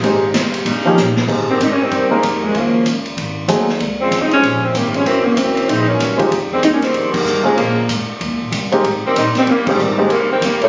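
Captured on a phone in a large studio with moderate reverb and a dulled top end, this brassy, swinging big band jazz excerpt in Ab major moves at 191 BPM: a woody, polished upright piano accompanies, a clear saxophone section holds sustained chords, a thumpy pizzicato upright bass holds the low end, and a swinging drum kit with a punchy kick plays a fill that leads into the smooth, up-front saxophone section melody with plate reverb from 1.5 seconds, while a mellow, roomy trombone section appears only at 10.6 seconds.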